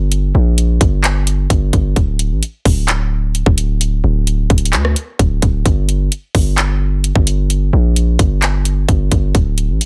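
Hard-hitting and menacing, this short cut from a longer hip hop track sits in trap territory at 130 BPM in 4/4, with a half-time feel in G minor and tuning set slightly low at A4 = 438 Hz. A distorted 808-style bass carries the low end from D1 to D2, its sine core roughened by a noise layer and heavy saturation, with a fast attack that decays under each note. The trap drum kit enters at 0.1 seconds with handclaps, hi-hat, kick drum and rim click, pairing a hard-clipped kick with metallic hats and a tape-tinged, produced electronic character. Both parts sit up front at equal level, the bass aggressive and weighty beneath the drums. Digital ambience surrounds the pair, and the dense, heavily limited modern master keeps the whole passage loud through to 9.9 seconds.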